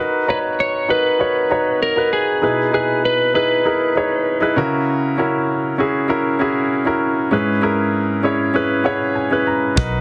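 Piano-driven pop with an anthemic, warm mood, cut from a longer piece, built on a clear, polished baby grand piano up front with plate reverb, moving through Bmaj7, Emaj7, F#7 and C#m7. A slightly broken-up, picked lead guitar carries the melody with plate reverb and digital delay until 4.5 seconds, and the piano plays a fill from 8.5 seconds. At 9.8 seconds a dark, round muted electric bass and an acoustic drum kit with a punchy kick and hi-hat arrive, all within a dense, heavily limited modern master.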